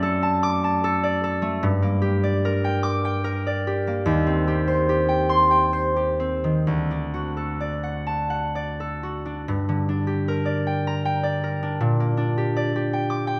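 Classical solo harp music in G minor, this dreamy, peaceful piece moves in a rubato 3/4, with the pulse drifting between 61 and 85 BPM. A single concert harp carries everything from 0.0 to 13.4 seconds, fingerpicked and up front, its ringing tone spanning from D2 up to D6. The harmony opens on D/F# and settles into G minor, passing through C minor over E-flat and D before a second section begins at 9.5 seconds and returns to G minor, then G minor over B-flat. A moderate recital hall reverb gives the acoustic harp a soft halo of space. The tuning sits slightly high at A4 = 441 Hz, and the passage is cut from a longer work.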